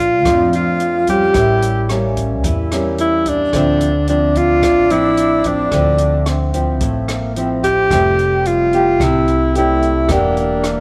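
A breathy alto saxophone with subtone and light vibrato carries the melody up front from the start, over an airy, straight-toned alto flute in the background, a very quiet dark, mellow grand piano, thumb-plucked nylon-string guitar with finger squeak and woody pizzicato upright bass, while an open jazz drum kit of hi-hat, rim click and boomy kick enters at 0.3 seconds in this intimate, melancholic bossa nova excerpt with light reverb and small-room ambience.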